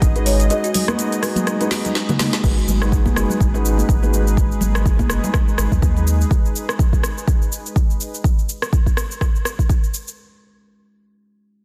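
An overdriven electronic kick drum sits up front in this spiritual, hypnotic afro house excerpt at 124 BPM in G# minor, pushing beneath an overdriven afro-pop kit with a woody snare and metallic hats, while high-tuned congas with hard hands enter at 0.8 seconds in the background. A round, deep analog bass pumps against the kick under a detuned, warbling sawtooth pad holding a G#m7 chord with chorus, as a hollow, ringing kalimba plays arpeggios through delay and gets a filter sweep from 2.4 seconds. A felt-muted upright piano adds mellow stabs with audible action noise, and a soft-mallet marimba plays a brief melody in the background, all set in light reverb and small room ambience under a dense, heavily limited master.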